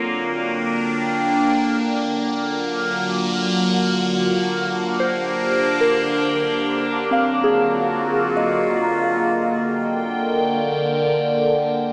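In free time, this serene, reflective ambient passage, cut from a longer piece, drifts through chords of Gm, F#maj7#5/D and Ebm under a huge, wet reverb that hangs for 6.9 seconds, heard through a small-speaker sound with a faint mains hum. Up front, an evolving wavetable pad holds bright, morphing sustained chords with slow attacks and phaser, while a soft FM synth bell plays gentle, mellow arpeggios washed in chorus, phaser and diffuse delay until 11.5 seconds. Beneath them, an overtone-sweeping drone with resonant sawtooth and sine colours sustains low in the mix until 11.9 seconds.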